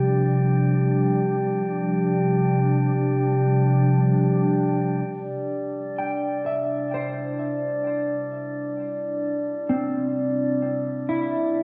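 A dark, warm production soaked in wet concert hall reverb frames this luminous ambient excerpt in C major at 65 BPM, moving from Dm7/C to Cadd9 at 5.1 seconds. A glassy FM pad with ensemble chorus holds slow-attack sustained chords throughout and fades in from 5.1 seconds, while a pure, ethereal glass harmonica adds a smooth, vintage texture above it. At 6.0 seconds a clean, fingered electric guitar enters with mellow arpeggios dressed in lush chorus and delay.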